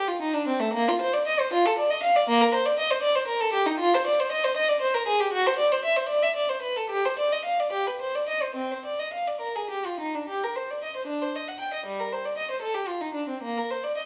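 A lone bowed violin with a rich, reedy gut-string tone opens this solemn, grave fragment of a baroque-style classical suite movement in 6/8, moving with rubato at around 66-81 BPM in dotted quarters, played up front and close in period style, settling into C minor at 3.8 seconds and moving into G minor at 10.3 seconds, with the ambience of a small stone room heard from further back carrying a 1.1-second reverb tail.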